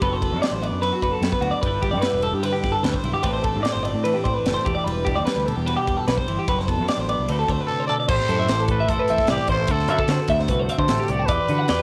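Math rock and midwest emo in a straight 4/4, this bright, playful fragment of a longer piece was recorded at home on cassette with light reverb. Two clean twelve-string electric guitars run throughout: one sits up front with compressed, twangy accompaniment, while the other picks arpeggios in a higher register through cassette tape coloring and tape echo. A growling, fingered electric bass, direct and amped with overdrive, adds punch underneath, and a crisp, polished fusion kit with an airy studio sound, a high-tuned snare, a punchy kick, hi-hat, ride and crash also carries a cassette tint. The harmony drifts through extended chords such as Bm7/F#, G6, Am11 and Em11 before a D7, and at 7.7 s a raspy, gritty trumpet takes the melody as a pop-style solo with vibrato. From 8.1 s a new section settles on Am7 before closing on Em9.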